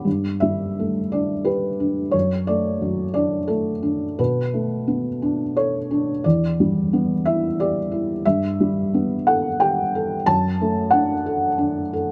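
A felt-muted upright piano opens this short excerpt of neoclassical minimalist piano music and plays alone from start to finish, reflective and melancholic in mood. The tempo sits around 88 BPM in 3/4, taken with a rubato feel, and the instrument is tuned slightly high at A4 = 441 Hz. Thick felt gives the piano a dark, intimate tone with short sustain, and the mechanical noise of its action is plainly audible, placing the listener up close to the instrument. Across a range from E2 to A5, the harmony moves through Gadd9, D/F#, Bm7 and Em7 before returning to Gadd9 and D/F#, the last chord arriving at 10.3 seconds. A light reverb surrounds the piano, and the music is cut from a longer work, ending at 12.1 seconds.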